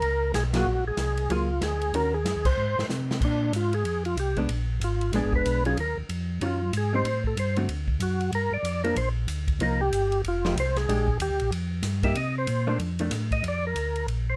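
Bluesy and greasy, this soul jazz organ trio swings at 188 BPM in Bb mixolydian, heard as a short cut from a longer piece. A percussive tonewheel organ carries the melody up front, lightly overdriven with second harmonic percussion, chorus vibrato and a slow rotary speaker, and from 3.2 seconds it takes a solo that runs to the end. Beneath it, a second tonewheel organ handles the bass line with a round, dark tone, audible key click and its own slow rotary swirl. A swinging big-band drum kit sits further back with an airy, polished hall sound, a medium-tuned snare and a punchy kick, striking band accents alongside the group and playing a fill just before the solo begins. A vintage hollow-body electric guitar adds clean, picked, compressed accompaniment, dropping out briefly before returning at 4.4 seconds and stopping at 13.1 seconds. Light reverb gives the trio a touch of space as the harmony moves through rich ninth and altered dominant chords before resolving to Bb.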